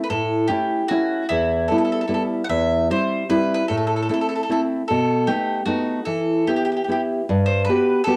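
Italian folk in the manner of a serenade, this short cut from a longer piece moves in a lilting, lightly swung triple metre with a wistful, romantic air. A bright, woody mandolin carries the melody, its picked double strings sitting up front from the very start. A nylon-string guitar enters at 0.1 seconds as fingerpicked accompaniment, full-bodied and deep with the sheen of fresh strings, reaching down into its low register beneath the mandolin line. The harmony opens on A and moves through Em, C/E and Am toward a dominant seventh before settling back on Em and closing on a major seventh color near 7.3 seconds. Both instruments carry a cassette tape character, and the whole is set in a small room with moderate spring reverb, giving it the intimate feel of a home recording.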